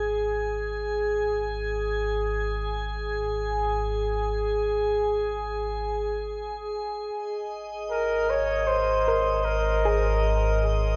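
In free time, this serene ambient piece fades in on a deep, rumbling drone colored by phaser and tube saturation, while a glassy texture of drifting overtones hovers up front through chorus and reverb. A distant, roomy flugelhorn enters at 7.9 seconds with a brief classical-style solo line, and a soft, round pluck adds mellow arpeggios in the background from 9.1 seconds. The dark production is bathed in a huge, wet reverb.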